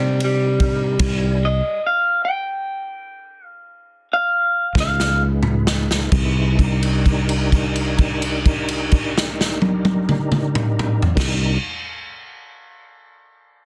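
A slightly broken-up electric guitar through a small old amp opens this soulful, smoky slow blues in C minor. It plays a clean solo up front over sustained tonewheel organ chords and a growly fretless bass, and a natural country drum kit joins just after. The feel is a straight 12/8 at about 43-51 BPM, and the first half slows down as the harmony moves from Cm7 to Cm and then to Db7. The guitar's lo-fi, compressed, fingered tone stops at 5.2 seconds, and a drum fill with punchy kick, medium-tuned snare and dark cymbals leads into the second half at 6.1 seconds, where a held note rings over a return to Cm7. The organ sits lower in the mix, clear and lightly overdriven, with chorus vibrato, key click and a slow rotary speaker, while the warm bass is direct and amped. The sound has little reverb and a dense, heavily limited modern master, and the clip is cut from a longer piece.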